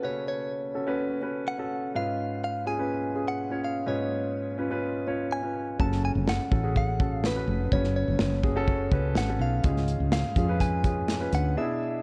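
A polished concert grand piano drives this bittersweet, dramatic piano pop excerpt, its deep bass and present tone sitting up front as it carries the accompaniment from the start. Over it, a bright, clean electric guitar recorded direct plays the picked, compressed melody in a straight 4/4 at 125 BPM, moving through F# harmonic minor over chords that shift between F#m and C#7. At 5.8 seconds a dark, round fretless bass with a hollow-body, woody character joins up front alongside an acoustic studio drum kit of hi-hat, tight kick and medium-tuned snare. The drums fall away at 11.4 seconds and the bass at 11.6, opening a break just before the piece cuts off. Light reverb and studio ambience surround the playing, while a worn cassette-tape quality adds warbly pitch drift to the sound.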